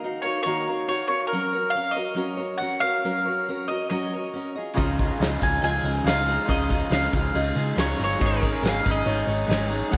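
Awash in wet hall reverb, this dreamy, wistful folk rock and heartland rock excerpt moves at 140 BPM in a straight 4/4. It opens with a woody, double-strung mandolin melody up front over a picked dreadnought acoustic guitar as the chords drift from Ebmadd9 to Gb. Near 4.7 s a slightly broken-up, compressed electric guitar riff through a small old amp joins, bathed in lush chorus. By 4.8 s a round, dark hollow-body bass, a soft brush kit with a fat snare and punchy kick, and a very quiet, barky, reedy electric piano fill out the dusty sound, with the harmony passing through Dbadd9 to Absus4 at 8.2 s.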